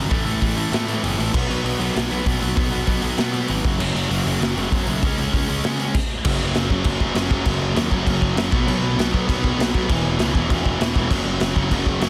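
A dense, heavily limited master with little reverb frames this rowdy, energetic punk rock excerpt, built on power chords such as A5, B5 and F#5. Up front, a raw garage drum kit features punchy kick, medium-tuned snare, hi-hat and crash in a pumping stone room, sounding gritty and saturated with a rolled-off top. A tight, bright distorted guitar and a crunchy overdriven guitar tucked in the background play riffs over a growly, fuzz-laden picked electric bass, with the first 6.3 seconds in half time before the second section drives on to the end at 12.1 seconds.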